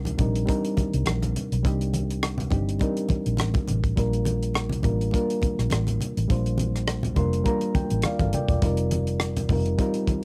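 Smooth and warm, this short cut from a longer piece is lush 1970s-style soul with a gently swung sixteenth-note feel in 4/4. A reedy, worn electric piano sits up front, slightly out of tune and lightly overdriven through its built-in speakers, with a cassette-tape tint and plate reverb, and it plays a fill from 6.9 to 8.6 seconds. Beneath it, a dark, round, foam-muted fingered electric bass with an amped tone holds the low end, while a tight, dry funk kit of hi-hat, kick and rim click drives the groove. Low-tuned, thick-skinned congas sit in the background in a small room, adding a warm acoustic cushion. The harmony moves from Cm9 to Bb6 and lands on F9sus4 at 8.6 seconds, all wrapped in the light reverb and soft haze of a home cassette recording.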